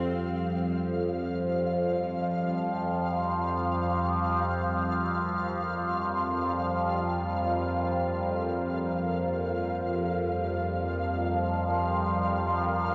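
Dark ambient drone in free time, ominous and cavernous: an up-front, warbling sawtooth drone with moving overtones and phaser sustains under a deep, detuned pad and a flickering, grainy texture that both fade in across the full 12.9 seconds, while a distant, nasal horsehead fiddle with light vibrato sounds only until 0.7 s through tape echo, all steeped in wet spring reverb and a dark, echo-heavy mix.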